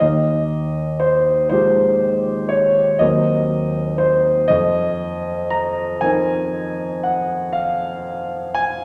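A grand piano plays alone from the opening moment, its natural tone carrying long sustain and sitting up front within a wet, spacious scoring-stage reverb. This mysterious, nocturnal impressionist classical fragment, cut from a longer piece, moves in a rubato 9/8 at about 40 dotted-quarter beats per minute, tuned to A4 = 438 Hz. The harmony drifts from Fm9/Eb to Ebm6 at 3.0 seconds and settles on F7sus4 at 4.5 seconds, spanning Eb2 to Bb5 over roughly nine seconds.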